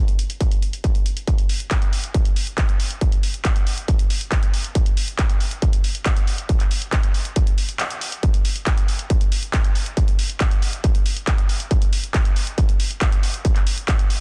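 Dense, heavily limited and fairly dry, this euphoric, driving trance excerpt in straight 4/4 pairs an up-front, distorted, layered electronic kick with a softer techno kit of handclaps and warm hi-hats, both re-recorded in a large room, with a brief break at 7.8 seconds.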